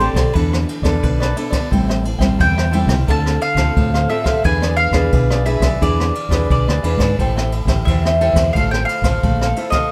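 Playful and lively, this short cut from a longer samba and choro piece sets a round, double-strung picked mandolin on the melody over crisp cavaquinho and a warm, fingerpicked classical nylon-string guitar. Beneath them, a dark, direct and amped fingered electric bass holds the low end until 9.5 seconds. An up-front brushed jazz drum kit with a boomy kick, shadowy ride cymbal and rim clicks carries a roomy, distant small-room character, and a light reverb colours chords that move from E7sus4 through Am7, Dm7 and E7.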